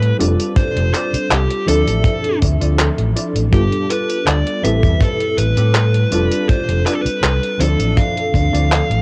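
An overdriven fingered electric bass sits up front with punchy tube-saturated weight, anchoring this woozy, nostalgic vaporwave excerpt at 81 BPM in F lydian, cut from a longer piece, as a dark, smooth lead guitar carries the melody through overdrive, 12-bit sampler grit, cassette tape and tape echo. A mellow FM electric piano adds round, full-bodied chords with ensemble chorus over a progression moving from F69 through Dm9, G9 and Am9, while a clean, compressed electric guitar riff with lush chorus and analog delay sits in the background from 0.2 seconds. A detuned 8-bit drum machine of handclaps, hi-hat and tambourine and a tight acoustic kick entering at 0.6 seconds keep a straight 4/4 pulse inside a digital, home-recorded cassette ambience.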